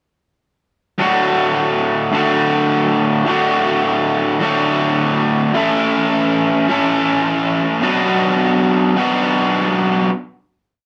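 A raw, bright, overdriven electric garage guitar, double-tracked and up front, plays alone from 1.0 seconds, picking ringing chords through D, A and B minor in D major (tuned to A4 = 444 Hz) in this short, hopeful, soaring rock piece at 105 BPM in a straight 4/4, set in a wet room ambience with a live feel, before a final hit at 10.1 seconds closes it.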